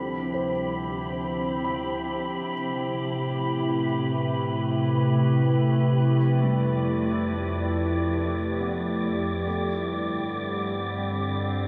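A glassy, chorused FM pad holds sustained chords up front in this weightless, serene ambient excerpt, with a very quiet felt-muted upright piano playing soft arpeggios, an airy, wind-like noise texture, and a deep, rumbling, detuned drone that enters at 0.3 seconds and fades in across the whole passage, all set in a vast cathedral-like reverb.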